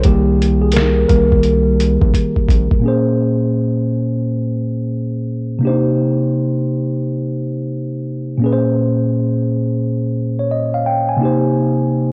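Worn, warbling old tape and a moderate spring reverb color this nostalgic, reflective lo-fi hip hop fragment, where a mellow, clean tine electric piano plays throughout over Cm7 and Bbm9 chords, joined at the start by a round, deep analog bass until 2.7 seconds and a muffled, overdriven sampler-style drum kit with a thumpy kick and fat snare that closes with a fill from 2.1 seconds.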